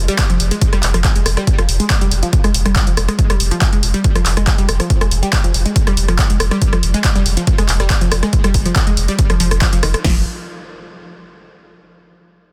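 Driving peak-time techno at 140 BPM in F minor, hypnotic and industrial, cut from a longer piece that opens at a drop and holds an Fsus2 chord until 10.0 seconds. A deep, thick sub bass pinned on F1, overdriven and low-pass filtered, pumps against the kick, while a lush, detuned sawtooth unison pluck plays a riff between Eb3 and Ab3 with tube saturation, tape echo and a filter sweep. Two tape-warm analog drum machine parts sit up front, one carrying punchy kick, snare and hi-hat, the other handclaps, hi-hat and rim click, all in a dry, dense, heavily limited master.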